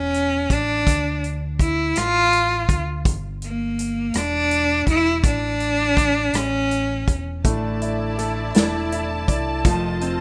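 A six-eight pop ballad in a dramatic, aching mood, this short piece cut from a longer work moves at a slow, straight lilt over chords that pass from A and D minor through G minor to a suspended A. A clear, bowed solo cello carries the melody up front with vibrato and a focused, close tone, singing until about 7.2 seconds. Underneath, a fingered electric bass gives a dark, round, amped low end, while a natural country drum kit, recorded with studio-room openness and sitting up front, marks time with hi-hat, punchy kick, rim click and a medium-tuned snare. At 7.4 seconds the texture fills out as a clear concert grand piano enters with smooth, vintage accompaniment and deep bass, joined by a lush, distant studio string section holding sustained chords and a fingerpicked archtop guitar playing arpeggios, its finger squeak audible and its notes echoed by digital delay. Light reverb and a small room ambience frame a rough home-demo mix with a soft, rolled-off top end, closing on an F7 chord.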